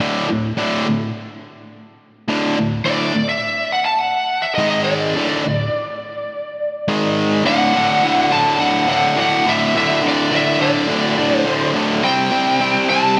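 A lead guitar through a small cranked amp carries the melody from 2.9 s, its warm, overdriven, picked tone sitting up front with slapback echo above a bright, double-tracked overdriven electric guitar riff in this swaggering, energetic rock piece in D mixolydian at 105 BPM. The riff guitar, also picked and up front with slapback echo, plays alone from 0.0 s, and both guitars continue to the cut at 13.2 s. A lush hall reverb gives the recording a big arena sound as the chords move between D5 and G#5, then to D and C5.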